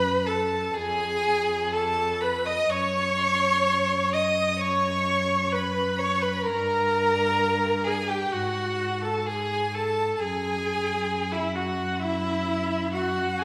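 Melancholic and solemn, this slow romantic classical movement for string quartet unfolds with rubato over a brief 13.4-second cut from a longer piece, as one violin sings the expressive melody with vibrato and portamento and a second violin carries a similarly rich second line, both sounding distant, while a close, clear viola plays a smooth, even accompaniment and a far-off cello holds a rich, smooth bass, all bowed within a moderate scoring-stage reverb.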